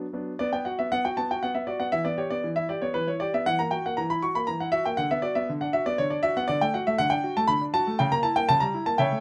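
The sound is clear and up front, with light reverb giving the room a faint glow around a solo grand piano. This is a classical-period sonatina fragment in triple metre, taken from a longer piece. The playing is graceful and cheerful, with a rubato feel that lets the phrasing breathe. The piano's tone is smooth with a vintage character and short sustain, and it ranges from C#3 to C#6 as it plays alone from 0.0 to 9.2 seconds. The harmony moves from a B5 opening through Em, F#7/E, Bm/D and D before reaching a C#dim7 chord at 8.0 seconds.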